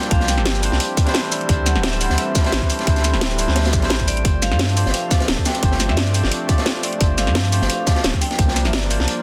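A tight, up-front electronic kick drives a swung 16th-note groove at 174 BPM in 4/4, layered with a garage kit's cracking snare, bright hats and shaker, while a dark, gritty breakbeat kit with a saturated, rolled-off top sits in the background with small room ambience. This is soulful, lush liquid drum and bass in G dorian, cut from a longer piece, with the full groove already running as a drop from the first second. A deep, round sine sub bass enters at 0.1 seconds and holds the low end firmly up front, and the kick drops out at 8.5 seconds. A barky, bell-like tine electric piano carries the accompaniment through a dub echo, over a thick, warbling sawtooth unison pad with chorus and sidechain pumping that moves through sus4 ninth chords. High above, a metallic, ringing vibraphone played with medium hard mallets and fast motor vibrato sings the melody in the background through a digital delay, all wrapped in light reverb and a dense, heavily limited modern master.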